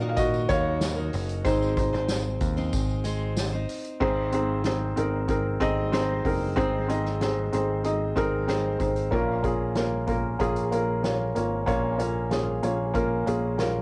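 A lightly reverberant home cassette recording with a tape tint on the piano, guitar and drums, this earnest, driving piano-driven pop cut opens with the soft, mellow, intimate felt-muted upright piano up front taking a solo role. A full-bodied picked steel-string acoustic guitar riff and a jingly tambourine are heard only through about 4.0 seconds. Beneath the piano's chords run a punchy, direct picked electric bass and a distant, roomy soft-mallet drum kit with a medium-tuned snare, punchy kick, hi-hat and crash, as the harmony moves from Ebm/Bb to Ab and settles on Bbm at 9.1 seconds.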